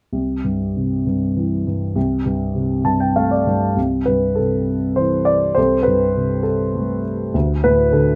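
A dark, mellow baby grand piano opens this relaxed, sunny fragment of a lyrical classical solo piece, playing in C major in 3/4 at 101 BPM with a flexible rubato feel and tuned slightly high at A4 = 441 Hz. Its worn tone and long sustain sit up front across a range from C2 to A5, with a fill at 2.6 s leading into a new section at 3.8 s as the harmony moves from C and F69/C through C6 and Am9/C to D5. Close, detailed microphones and light reverb capture the instrument intimately.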